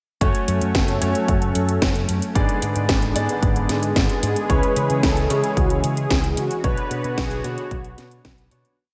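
A punchy four-on-the-floor kick and a disco machine beat of cracking snare and metallic closed hats drive this short, melodramatic and bittersweet italo disco piece, where an amped, octave-jumping picked bass with an envelope filter runs beneath a detuned sawtooth pad with chorus and an intimate grand piano playing held chords with syncopated pushes through analog chorus and diffuse delay, before a dark, round synth brass with vibrato enters at 4.5 seconds with hook phrases, all soaked in a dreamy hall reverb as the piece fades out from 5.9 seconds.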